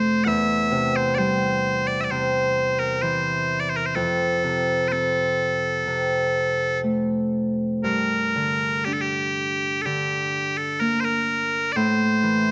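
Piercing, continuous bagpipes carry the melody up front in this haunting Celtic slow air, their longing line flowing with a free, rubato feel. A fingerpicked Celtic harp rings beneath them as acoustic accompaniment, tracing chords through F, G minor and A minor. Close, detailed microphones capture both instruments in a moderate recital-hall reverb, and the passage is cut from a longer piece, running to 12.5 seconds.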